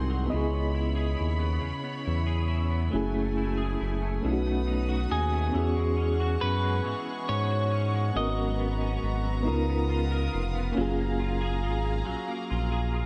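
A slow 6/8 sway at 46 BPM carries this late-night, sultry R&B excerpt, where an up-front, smooth synth bass sits beneath a reedy electric piano with fast tremolo, soft sul tasto studio strings float in sustained chords, a clean, compressed semi-hollow guitar with ensemble chorus adds a second line, and from 5.1 to 10.3 seconds a dark, fingered hollow-body guitar melody with subtle chorus and analog delay sings over changes from C#m7 through G#m11 to F#maj9, in a dreamy mix soaked in lush hall reverb.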